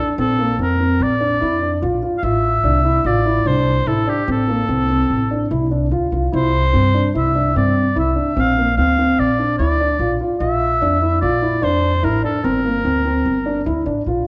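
Set in an uneven 5/4 at 147 BPM with a straight feel, this contemporary chamber piece moves with a hypnotic, restless pulse over a short stretch cut from a longer work. A clear oboe carries the solo melody in classical style, its light vibrato sitting up front from the opening until 13.7 seconds. Beneath it, a dark, mellow baby grand piano spins arpeggios in a low-middle register, while a woody upright bass, plucked on steel strings, anchors the low end from 0.2 seconds. The harmony drifts from Bbmaj7 through Fmaj7/A, C and Bbadd9 before settling toward Gm near the close. A recital hall reverb lends the trio a wet glow, and a worn cassette-tape character adds warbly pitch drift that heightens the hypnotic, restless mood.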